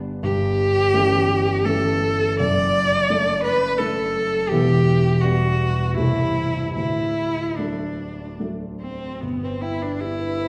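Romantic classical duo for cello and grand piano, serene and unhurried in 3/4 at 72-88 BPM with a flexible rubato feel and tuned to A4 = 441 Hz, cut from a longer piece. A single bowed cello carries the melody from 0.2 s with a rich, smooth vibrato tone, while the dark, mellow concert grand accompanies from deep bass up through the middle register, with a vintage character and audible action noise. Both instruments sit up front within the long, wet bloom of a recital hall, and the harmony moves through A7/G, D/F#, Em7 and Am7/C before settling on G as a new section begins at 9.2 s.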